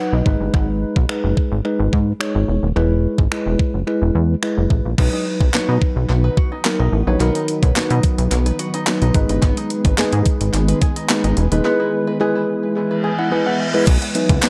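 This upbeat, summery dance-pop excerpt in B major moves at 108 BPM in a straight 4/4, opening on a worn, slightly out-of-tune tine electric piano fill that sits up front with tape echo and sidechain pumping. A punchy, funky analog bass with a sawtooth-and-square filter pluck arrives almost at once, joined by a clean 12-bit drum machine whose thumpy kick, medium-tuned snare, hi-hat, finger snaps, handclaps and crash were re-recorded in a large room and carry tape echo. The harmony cycles through G#m, E and B, and at 5.0 seconds a mellow, twangy fingerpicked open-back banjo adds plunky arpeggios, pumping under the sidechain. A glassy, ethereal FM pad with slow attack, ensemble chorus and its own reverb drifts in behind at 6.1 seconds, holding sustained chords in the background. Near the end another electric piano fill coincides with a reverse cymbal, and a very quiet, crisp group handclap lands close and dry in the final moment, all within a lightly reverberant, echo-heavy mix.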